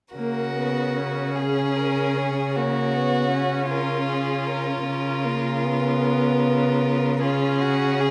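Lyrical and warm, this slow romantic string quartet movement in a rubato 12/8 at about 48-53 BPM has a rich, vibrato-laden first violin singing the melody over a clear, close second violin line, a rich viola accompaniment and a rich bowed cello bass sitting up front, all held in the reverberant glow of a recital hall in a short excerpt cut from a longer piece.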